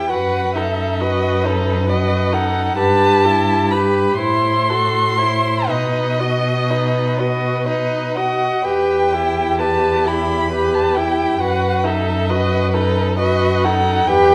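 A string quartet opens this yearning, elegiac slow romantic movement together from the first moment, in 6/8 at 39-46 BPM counted in dotted quarters, with a freely breathing rubato. The first violin carries the melody high above the group with a warm, vibrato-rich tone, soft attacks and expressive portamento slides, its smooth top sitting up front. Beneath it the second violin traces a focused second line, while the viola fills in the accompaniment with a rich, vibrant voice. The cello anchors the bass with its own vibrato and expressive portamento. The harmony moves from B7/F# through Em/G, F#m7b5/A and B to Em before returning to B7/F# at 11.4 seconds, and a wet recital hall reverb surrounds the players in this 14.3-second passage cut from a longer piece.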